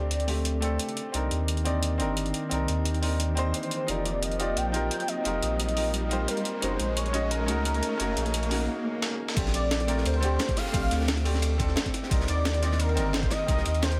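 A clear grand piano with delay, a lush, warbling unison pad thickened by chorus, a round sine sub bass up front and a velvety, vibrato-tinged synth lead under a filter sweep open this uplifting liquid drum and bass excerpt in Bb major at 175 BPM, where a gritty sampler-style breakbeat kit with a high-tuned snare drives the build-up, a background electronic riser and swell carry into a brief break and drum fill, and at 9.4 seconds the drop brings in a thumpy compressed kick and a dark, crunchy small-room breakbeat kit sitting in the background, over Bbmaj13 and Cm9 chords in light reverb.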